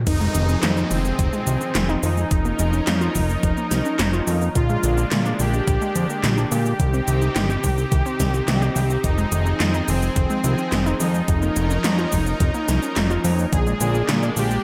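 A fat, saturated analog bass sits up front in this cinematic, nocturnal synthwave excerpt, its detuned sawtooth tone moving under a minor-key progression that circles from Fm7 through Db6/F and Bb7 to Cm. A smooth, tape-coloured supersaw carries the melody with delay, while a lush, bright unison pad holds sustained chords with chorus and sidechain pumping, and a warbling, lo-fi pluck plays arpeggios through chorus and tape echo in the background. Overdriven 80s pad drums with a gated snare, metallic hi-hats, handclaps, cabasa and crash cymbal play alongside a thumpy sampler-style kick that drops out at 13.6 seconds, while a background downlifter sounds until 4.6 seconds.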